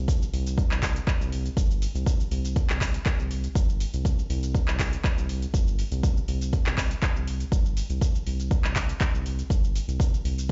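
A straight 4/4 groove at 121 BPM drives this earthy, spiritual afro house excerpt, where an overdriven, layered electronic kick sits up front beside a round, dark analog bass pumping with sidechain between G1 and C2, while an overdriven afro-pop kit of handclaps, shaker and metallic hi-hats rattles from a small room, all heard through a big sound system in a bare stone room with dulled highs.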